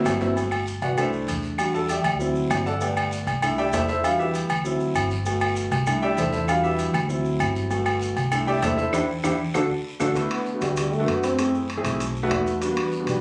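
A brisk, straight four-beat groove from ringing, close timbales and agogo bells, with woody claves, raspy guiro and grainy maracas in the background, drives this sunny, lively Afro-Cuban jazz cut from a longer piece. An up-front grand piano with long sustain and audible action noise takes a solo over a cycling Gmaj7, C69, Em7 and D7 progression, anchored by a pizzicato upright bass, as a drum fill and band accent close out its final bars. At 10.3 seconds a breathy, whispered trombone with light vibrato enters from a distance as the harmony moves toward Em9, all heard through a phone-recorded club ambience with compression.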